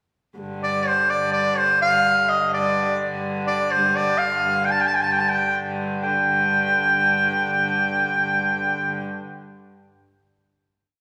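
A bright shawm leads this short medieval dance, playing a solo modal folk melody with ornaments and light vibrato, up front yet roomy, over a lower, softer wheel-bowed hurdy-gurdy drone with an earthy, clear tone that enters at 0.4 s. In a driving 6/8 at 86 BPM in dotted quarters, the mysterious piece speeds up until 8.7 s and settles on a final chord from 6.0 s. Both instruments sound distant, heard from further back in the room with a wet scoring-stage reverb.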